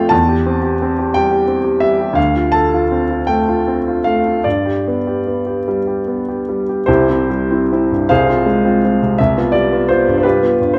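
This romantic classical character piece for solo piano has a warm, lyrical mood and unfolds in 6/8 with flexible rubato. A clear, intimate baby grand sits up front for the full 10.8 seconds, spanning C2 to A5, with its natural tone carrying audible action noise. The piano moves through C/E, Dm7 and G before a contrasting passage at 6.9 seconds shades the harmony with Fm/C and G7/C, all within a wet recital-hall reverb and a dark production in this fragment of a longer work.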